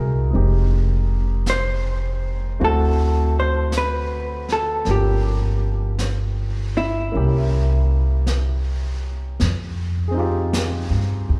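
A natural-sounding grand piano and a woody, up-front pizzicato upright bass open this smoky, melancholic jazz ballad in F minor at a slow, swung 53 BPM, joined at 0.3 s by a distant, roomy brush kit with a rolled-off top, while a dark, clean, compressed hollow-body electric guitar carries the picked melody from 1.5 s to 8.2 s over chords moving from Fm9 through D7, Gm7b5 and C7b9 back to Fm9, the excerpt set in the moderate reverb of a church.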